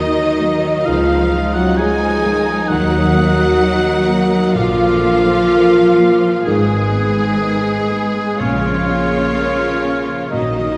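A wet concert-hall reverb surrounds this sorrowful, bittersweet film-score excerpt for orchestra, moving at a rubato 64 BPM in 4/4 over a chord path from Ebm to Bbm7. A lush, vibrato-rich violin section carries the melody while a second, focused violin section, a solo oboe, a mellow clarinet and a distant, hollow silver flute weave secondary lines, with a felt-muted upright piano in the background and a very quiet viola section filling out the accompaniment. Dark, roomy French horns hold sustained chords above a cello section and a dark double bass section that enters at 0.9 seconds, while round, soft-mallet timpani sound very quietly from 4.6 to 9.8 seconds.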